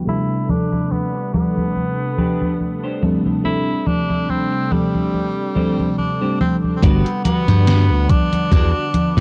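Vaporwave with a nostalgic, woozy mood, moving at a slow 71 BPM in G major with a light swing, heard here as a short cut from a longer piece. A soft, round FM electric piano with analog chorus and a lush, detuned sawtooth pad sit in the background, while a clean, twangy electric guitar riff carries 12-bit sampler grit and a filter sweep through the opening 6.8 seconds. A bright tenor saxophone takes the melody with vibrato and scooped notes in a jazz style, roughened by sampler grit and trailed by tape echo. A gated 80s drum machine with congas, hi-hat and an overdriven gated-reverb snare sounds as if re-recorded in a small room. At 6.8 seconds the harmony moves from D7sus4 to Gmaj7 as a punchy, glassy slap bass with tube saturation comes in up front, joined by a thumpy, overdriven electronic kick. The mix is steeped in cassette tape haze and a low-pass filter.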